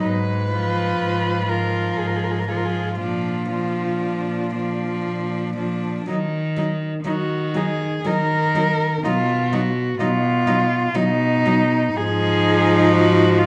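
Classical music for a cello ensemble, melancholic and yearning, moves at 60 BPM in 3/4 with uneven, rubato beats in E-flat minor, a 13.5-second fragment cut from a longer piece. A nasal, woody cello carries the melody up front with portamento and light vibrato, while a dark second cello with an airy bow and smooth top, a warm accompanying cello, and a rich, pure, floating bass cello all play sul tasto with soft attacks. A wet recital-hall reverb surrounds the bowed voices as the harmony moves from Fdim/Ab through Bb, Ebm and B to Fm7/Ab.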